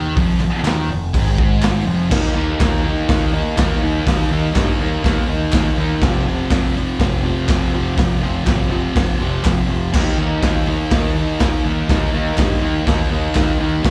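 Raw and gritty, this garage rock excerpt from a live club gig pairs a thick, double-tracked fuzz guitar riff with slapback echo against a growling, bright overdriven picked bass and a saturated, boomy drum kit with dark cymbals and a pumping small-room sound, while a crisp, very quiet group handclap sits underneath, and the harmony moves from an opening F minor to Eb5 at 2.1 seconds, then to F5 and back to Eb5.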